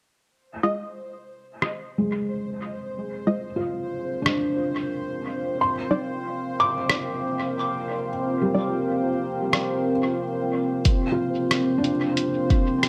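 Deep and hazy, this ambient dub fragment, cut from a longer piece, drifts along in a straight 4/4 with a heavily echoed mix and a moderate plate reverb. A bright, resonant, bubbling sawtooth texture opens at 0.3 seconds, stepping randomly through its filter, and is soon joined by muted, detuned dub chord stabs with a filter pluck and fast attack, coloured by chorus, cassette tape and dub echo until they stop at 8.8 seconds. A compressed, muffled, sampler-style drum kit of hi-hat and rim click sits up front with low-passed hats and snare, while a soft, felt-muted upright piano plays mellow, intimate arpeggios with audible action noise, a short sustain and its own dub echo. Underneath, a dark, moody pad of detuned unison sawtooth, sine and sub octave gradually fades in, holding sustained chords that move from Fm7 to Ebmaj7. At 10.9 seconds the harmony settles onto F5 and an overdriven, layered electronic kick drum comes in up front, re-recorded in a small room, to carry the closing section.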